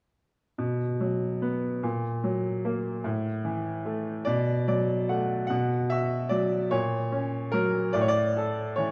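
A bright, up-front baby grand piano opens this reflective, wistful classical excerpt at a rubato 49 BPM in 6/8 and B minor, moving through B5, F#/A#, A5 and Bm7, where a fill runs from 4.3 to 5.5 seconds before the harmony returns to B5 and settles on Dsus2/A, with the piano ringing in a wet recital hall under a dark production marked by lossy compression artefacts.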